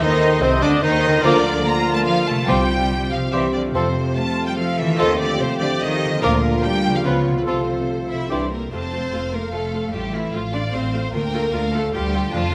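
A lush, vibrato-laden violin section carries the melody in this spirited, graceful classical excerpt in 3/4, while a second violin section, an airy flute and a smooth cor anglais add supporting lines, and clear violas, a very quiet bassoon, mellow French horns and dark, distant trombones fill out the harmony until the winds and brass stop at about 8.5 s; a ringing harp plays arpeggios over rich cellos and double basses, and soft, round timpani enter at 2.5 s, all set in a moderate scoring-stage reverb.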